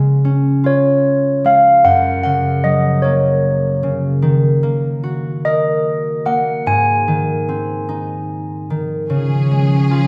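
Gentle and innocent, this excerpt of a children's lullaby in Db major drifts in a rubato 6/8 at about 50 BPM, with a ringing, fingerpicked concert harp accompanying up front throughout while airy, mellow handbells carry the clear melody from 0.7 to 8.7 seconds, and a rich, smooth bowed string section adds sustained chords with vibrato from 9.1 seconds, all set in the moderate reverb of a concert hall.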